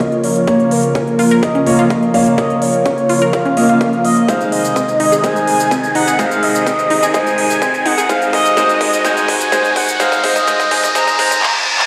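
Progressive house build-up, dreamy and bittersweet, cut from a longer piece, where an expressive, dark sawtooth lead with vibrato and dub echo sings over a slow-attack analog pad, a warbling, tape-touched pluck arpeggio and clear, short-sustain grand piano stabs, both under filter sweeps, all pumping against a punchy kick and a big-room kit of crisp hats, handclaps and shaker, while a riser enters at 1.6 s, a drum fill arrives at 4.3 s and a reverse cymbal at 11.0 s, the whole bathed in lush hall reverb and the echo of a bare stone room.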